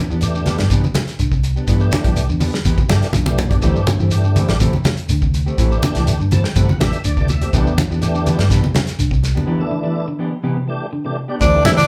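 Driving and joyful, this afrobeat groove rides on a dry soul drum kit with a tight kick, thick-skinned low-tuned congas, a grainy shekere and a dark, round fingered bass, while a clean electric guitar picks arpeggios in the background and a semi-hollow guitar adds hollow-body stabs. A full, lightly overdriven tonewheel organ with chorus vibrato and slow rotary speaker fills out the chords and takes its own fill from 6.1 to 7.5 seconds, with the band playing live together in one large studio room. After a break at 9.5 seconds, an edgy tenor saxophone up front and a breathy, distant trumpet enter together at 11.4 seconds as the cut ends.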